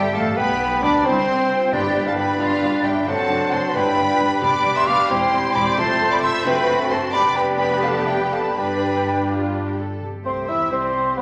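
Quick, graceful classical-period symphonic music in a lively 6/8 at 88 BPM, played with rubato, with a focused violin section carrying the melody from B4 up to F6 while an airy silver flute, a close-miked oboe, a bright clarinet and a second, expressive violin section weave supporting lines. Beneath them a distant bassoon and a smooth, very quiet viola section accompany while a loose French horn section holds sustained chords, and the cellos and a warm double bass section anchor the bass. Hard-mallet timpani on calf heads tap in briefly at 1.7 and 10.0 seconds, the second entry arriving just as the harmony settles on C, all bathed in a wet recital-hall reverb in this fragment of a longer movement.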